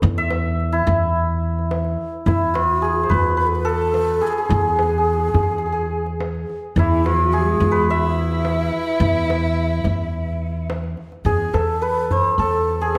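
Heard in a moderate recital-hall reverb, this stately, passionate Persian modal ensemble piece is cut from a longer work. A bright, shimmering hammered santur up front carries the melody over woody, thumpy pizzicato upright bass and tight, saturated tombak struck with hard hands in a straight 4/4. A breathy low ney with vibrato and a crisp attack joins on a second line at 2.3 seconds, and a focused, distant bowed cello adds its own line from 6.8 to 10.7 seconds.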